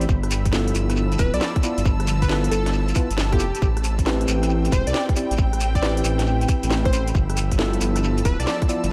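UK garage in a swung two-step groove, this late-night, bouncy excerpt moves over G13 and Am9 chords, with a deep, rumbling detuned saw bass sitting up front with tube saturation beneath a tight electronic kick and a garage kit of cracking snare, rim click and crisp hats, joined by a grainy shekere. A clean tine electric piano plays stabs through digital delay while an ethereal pad with chorus and phaser and a lush, woody string section pump softly in the background. From 1.2 s a punchy, catchy unison lead with vibrato and a filter sweep carries the melody, all within a dark production and light reverb.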